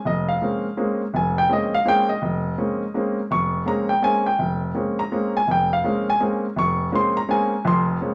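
A lilting 3/4 swing at 166 BPM carries this cool, hypnotic jazz excerpt in Bb dorian, where a solo baby grand piano with a natural, up-front tone and short sustain spans from F1 to Db6 over a Bbm9 chord, set in a moderate large-studio reverb and playing from 0.1 to 8.1 seconds.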